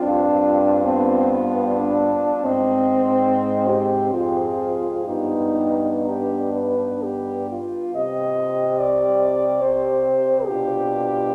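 Elegiac and yearning, this short excerpt from a classical piece for horn quartet unfolds in C minor at an unhurried 3/4 pace of around 60 to 77 BPM, with a freely breathing rubato feel. A clear, slightly vintage-toned French horn carries the melody up front, while two mellow horns, set back in a distant, roomy space, supply the second line and a deep bass. A close-miked horn with a warm tone fills in the softer accompaniment in the middle. All four players shape their lines with a light vibrato in a lyrical classical style, and a resonant church reverb with a long tail surrounds the ensemble. The harmony leans through G7, A-flat and F minor before arriving on C minor at 8.0 seconds, where a new section opens and then turns back toward G7 over B.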